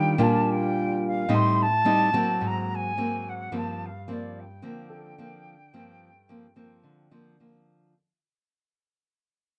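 This bossa nova fragment in G minor moves at 108 BPM in a straight 4/4 and feels intimate and wistful, fading out across its full eight seconds. An airy concert flute carries the melody up front with vibrato and tongued, expressive phrasing that still sounds distant, while a small, fingerpicked nylon-string guitar supplies the accompaniment through chords such as Ebmaj9, Am7b5, Ab9 and Gm11. A natural-toned grand piano sits in the background, appearing briefly at 0.2 seconds and returning at 4.9 seconds, all within a dark, warm production with moderate studio reverb.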